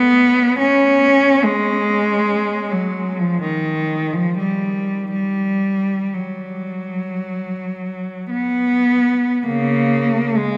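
The rhythm moves in a free, breathing rubato over a slow 4/4 pulse, letting each phrase stretch and settle at its own pace. This is a short classical passage for a single bowed cello, cut from a longer work, and its mood is meditative and mournful. The cello sits up front, its tone rich and focused with a smooth top and vibrato, keeping to a middle register for the full 10.6 seconds. A cathedral reverb with a long 5.9-second decay surrounds the instrument, giving each note a lingering, spacious halo. Near 9.5 seconds the music turns to a new idea, and the passage breaks off soon after.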